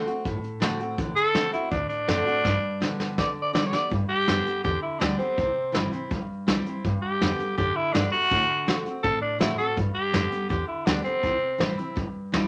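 A raspy, gritty tenor saxophone opens this upbeat, rowdy rockabilly excerpt in G major at 164 BPM, sitting up front over a full-bodied picked steel-string acoustic guitar and a woody, thumpy pizzicato upright bass on gut strings. A dark, smooth brush kit with a punchy kick joins almost at once and plays a fill from 2.4 to 3.9 seconds, leading into a new section. The tune moves through D7, G and C in a moderate club reverb, with the sax phrase ending at 11.8 seconds just before the cut.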